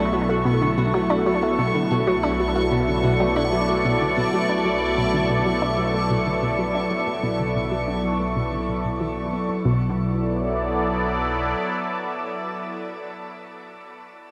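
Cosmic and mysterious, this ambient excerpt in B minor at 93 BPM sets an airy, detuned resonant pad up front alongside a nasal, wave-folded analog pluck riff with chorus, 12-bit sampler grit and analog delay. A bright fingerpicked Celtic harp rings through arpeggios in the background until 7.7 seconds, a fat analog bass holds a low B, and a bubbling stepped-filter texture glitters high. A filter sweep moves over a synth arpeggio sound until 9.7 seconds, when the Bmadd9 harmony settles to plain Bm. The pad sustains to 13.0 seconds inside a long shimmer reverb, outlasting the bass, which fades at 11.5 seconds.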